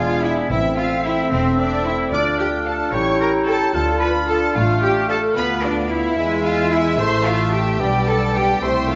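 A quick classical-period orchestral passage in A minor and 6/8 at 74 BPM, dramatic and urgent in mood, opens with the full orchestra at once. A rich, expressive violin section carries the melody over a close double bass section and a clear, distant cello section, while hollow flutes, a soft-attack clarinet and a lightly vibrato oboe add second lines, and a dark bassoon, a focused viola section and a mellow French horn section supply accompaniment and sustained chords in the background. A smoother second violin section joins at 0.2 s, round, very quiet soft-mallet timpani sound on A from 0.5 to 1.3 s, and the harmony moves from A minor through D minor, A7 and a diminished chord to E before returning to A minor, all within a wet scoring-stage reverb with a dulled top.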